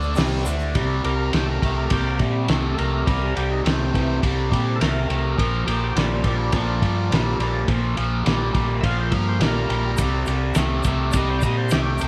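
Classic rock at 104 BPM with a sunny, confident drive: a brief, very quiet piping organ chord opens before an overdriven, gritty tonewheel organ takes a full, thick solo melody through a slow rotary speaker from 1.1 seconds, over bright, picked riffs from a phaser-tinged overdriven electric guitar and an overdriven semi-hollow guitar, a round, up-front hollow-body bass, a muffled, cloth-damped drum kit with fat snare and dark cymbals entering at 0.2 seconds, and a grainy tube shaker returning at 10.0 seconds, all in a small room ambience.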